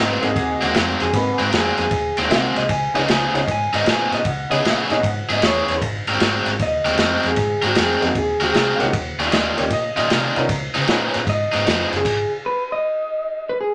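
A warm, slightly broken-up electric guitar through a small old amp carries the melody up front from 1.0 seconds, over a bright, overdriven garage guitar riff, a round, foam-muted fingered bass and a dark vintage drum kit with a tight kick, medium-tuned snare and ride and crash cymbals in this soulful, rollicking electric blues shuffle at 154 BPM in Ab mixolydian, cut from a longer piece. A jangly, detuned honky-tonk upright piano adds accompaniment, while a woody, intimate second upright piano with audible action noise sits in the background with brief second lines. The band moves through Ab9, Db9, Dbm7 and Eb9 before a stop at 12.1 seconds, where the guitar melody carries on in the wet studio reverb until 13.7 seconds.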